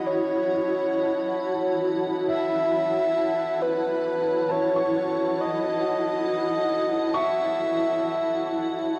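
In free time, this melancholic and serene ambient passage in F# dorian rests on a single F#m7 chord and is cut from a longer piece. A breathy, flute-like synth lead carries the melody up front between B4 and E5 for the first 8.9 seconds, its soft attack and gentle vibrato colored by chorus, cassette tape grain and tape echo. Alongside it, also up front, a granular cloud pad holds sustained chords, blurred and full-bodied, slowly evolving through its own built-in reverb with a hazy tape texture. Far in the background, a felt-muted upright piano plays intimate, mellow arpeggios high in its range, fading in over the full 9.0 seconds through cassette tape and tape echo. A lush hall reverb and the softened character of a home cassette recording wrap the whole scene in a dreamy, distant calm.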